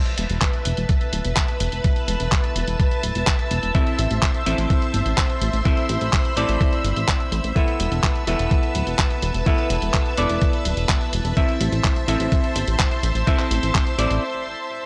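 Melodramatic and nostalgic, this italo disco section at 126 BPM in A minor rides a thumpy, up-front electronic kick, a dusty, tape-toned soul drum kit with handclaps and hi-hat, and a glossy, chorused pulse-width synth bass under lush, bright string-machine chords that alternate between Esus4 and Am, with clean semi-hollow electric guitar stabs entering at 3.7 s through tape echo, all in a dry, gritty hardware recording with transformer saturation and digital ambience before a brief break at 14.2 s.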